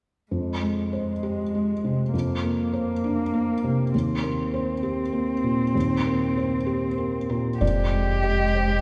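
A felt-muted upright piano and a veiled, con sordino cello open this short neoclassical fragment at 0.3 s, the piano's thick-felt tone intimate and mellow with audible action noise, beneath a tender, hopeful mood in a rubato 3/4 that moves from Fmadd9 through Bbadd9/F to Eb6. At 7.6 s, as the harmony returns to Fmadd9, a single muted violin with an airy bow and vibrato takes the melody on G4, while a punchy sine sub bass with a pitch-drop attack sustains a deep F1 underneath. A wet reverb from a church or concert hall surrounds the up-front parts.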